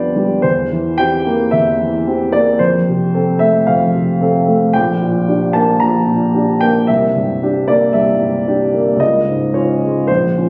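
Captured on a phone in a recital hall, the sound carries a wet reverb with a 1.4-second decay around a natural, up-front grand piano of warm character. This hopeful, lyrical romantic character piece for solo piano moves at 112 BPM in 4/4 with a rubato feel, tuned to A4 = 439 Hz and spanning Bb1 to Bb5. Over 10.5 seconds cut from a longer work, the harmony passes through C7/E, F, Gm/Bb and C9 before landing on Db at 9.0 seconds.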